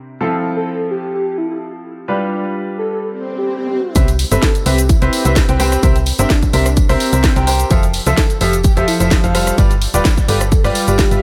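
Uplifting, feel-good piano house at 128 BPM in C major, with a light 16th-note swing, cut from a longer piece. A clear, up-front grand piano opens with a riff over Fmaj7 and G7, treated with lush chorus, tape echo and sidechain pumping, and at 0.6 seconds an airy, dreamy lead joins with a soft, detuned sine tone, vibrato and a noise layer. An electronic swell at 3.1 seconds builds into the drop at 4.0 seconds, where the chords move through Cmaj7, C7, Fmaj7 and G7. Here a punchy layered kick hits up front, a solid FM bass adds a round, dark low end with its own pumping, and a house kit brings a cracking snare, rim click, hi-hat and cabasa. A background tambourine blended with maracas and group handclaps adds a live, acoustic touch, all set in a light reverb.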